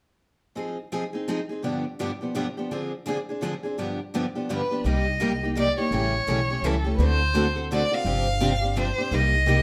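Virtuosic and fiery, this short cut from a longer piece is acoustic string swing in the jazz manouche style, moving briskly at 168 BPM in 3/4 with a swung eighth-note feel in C minor. Two picked steel-string acoustic guitars carry the accompaniment from the opening, one boxy parlour guitar with fresh strings sitting up front and a brighter auditorium guitar set a little lower beneath it. At 4.5 seconds a single bowed violin takes the melody, its rich tone shaped by vibrato, portamento and a soft attack for an expressive line. An upright bass joins at 4.8 seconds, its pizzicato gut strings sounding woody, dark and thumpy in the foreground. The harmony moves through Fm7, G7 and Dm7b5 before turning to Cm7, A7, D7 and G7sus4 and settling back on Cm7, all within a moderate studio reverb.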